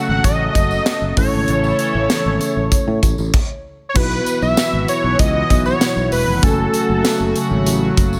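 Nostalgic and glossy, this 1980s-style pop excerpt at 97 BPM in straight 4/4 carries a thick, bold unison lead melody with tape echo over a mellow tine electric piano, a shimmering chorused pulse-width pad, a growly fretless electric bass, an airy, polished studio drum kit with a high-tuned snare and tight kick, and a jingly, distant tambourine, moving from F#m and A through Bsus4 to F#madd9 after a brief stop at 3.3 seconds, all in light reverb.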